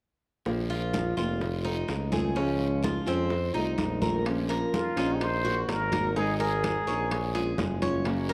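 A dark production sits in a moderately reverberant large studio, giving this short cut from a longer Cuban son and guajira piece a sultry, danceable glow at 126 BPM in straight 4/4. From 0.5 seconds, a small, fingerpicked nylon-string guitar and an up-front tuba with scooped, warm notes carry the harmony in Bb harmonic minor. Around them sit bright, compressed congas in the background, tight high-tuned bongos kept very quiet, and a raspy, close guiro. A picked Cuban tres adds metallic arpeggios on double strings, some doubled at the octave. At 4.3 seconds the music moves to Bb minor and ringing metal-shell timbales join, very quiet and dry. At 4.7 seconds a plunger-muted trumpet takes the melody up front, its jazz-style wah-wah lines shaded with light vibrato and scooped notes.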